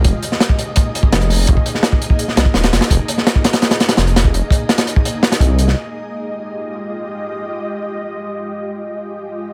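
Lightly reverberant and gritty, this dark, frenetic drum and bass excerpt opens on a drop where a crunchy, saturated breakbeat kit with a tight kick and rolled-off top and a deep, rumbling detuned saw bass sit up front beneath an ethereal, airy pad of sustained chords with ensemble chorus and vintage sampler grit, until the drums and bass stop near 5.8 seconds and the mellow pad carries on alone under a filter sweep to 9.5 seconds.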